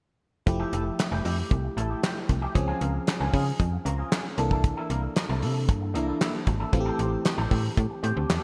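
A bright, digital 1980s-style production places this feel-good, smooth slice of early-eighties boogie funk in a moderate, lush hall, cut from a longer piece and running in straight 4/4 at 115 BPM in F major. Up front, a damped 70s drum kit lays down handclaps, hi-hat, a tight kick and a fat, dry snare, with gated reverb on the kit. A snappy, slap-like FM bass with a metallic, fast attack holds the low end alongside the drums. A glassy FM electric piano with a bell-like attack and a noise layer plays the accompaniment through chorus and phaser. An electric guitar carries the riff, clean, picked, twangy and scooped, compressed and shaped by an envelope filter under lush chorus. All parts play from 0.5 to 8.4 seconds as the chords move from Fmaj9 through Dbmaj7 and C13 to Am7.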